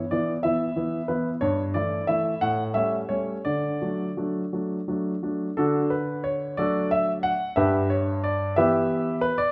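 Graceful and playful, this short excerpt from a classical-period piano sonatina moves in 6/8 with a flexible, rubato feel. A solo grand piano carries the whole passage, its tone present and polished, sitting up front in the sound. The piano ranges from G2 up to F#5, and the harmony moves through chords such as A7 and D before settling toward Em/G near 7.6 seconds. The music opens with one section and turns to a contrasting one at 5.6 seconds, running to 9.5 seconds. A generous recital hall reverb surrounds the instrument, lending the performance an airy, concert-like glow.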